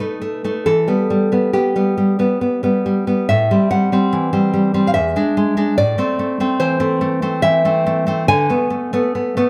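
Sunny and tender, this short passage cut from a longer romantic solo classical guitar piece moves at 71 BPM in 3/4 with uneven, rubato beats, its fingerpicked nylon-string guitar sounding woody, with the warm character of old strings, up front in a close, detailed recording with a slapback echo and light reverb as the harmony drifts from B7 through Am7 and E7 to Am.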